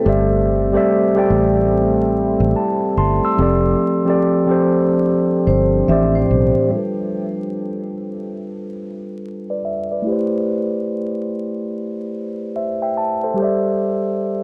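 This excerpt of hazy, nostalgic hip hop moves at 72 BPM in 4/4 with a swung 16th-note feel. It opens with a ringing vibraphone note, a deep, moody pad and a mellow tine electric piano, and fingered electric bass joins almost at once. The electric piano carries the accompaniment up front, clean and direct, colored by cassette tape and a low-pass filter over chords such as C69/G, F69 and Am11. The round, foam-muted bass sits dark and up front, while the detuned sawtooth pad hovers in the background, softened by chorus and its own reverb. The metallic vibraphone, played with the motor off, returns briefly at 5.5 seconds through analog delay. Pad and vibraphone drop away at 6.7 seconds, with the bass stopping just before, and the electric piano then plays alone under a filter sweep through G9 and Am9 before settling back on C69/G, all wrapped in vinyl crackle and the reverb of a small room.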